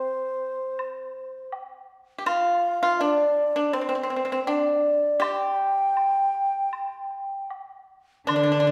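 Moving in a free, rubato 4/4 around 81 BPM, this graceful, tender passage of Chinese traditional chamber music is cut from a longer piece, with a mellow, pure bamboo xiao carrying the tongued, straight-toned melody up front while a dry, percussive pipa played with fingerpicks sets a second line beneath it and a close woodblock enters at 0.8 seconds. Just before the end, at 8.3 seconds, a single bowed cello with a nasal, reedy gut-string tone in period style adds a brief second line on D3. The ensemble sits in a wet recital-hall reverb with a 1.5-second decay, as heard in a church or concert-hall setting.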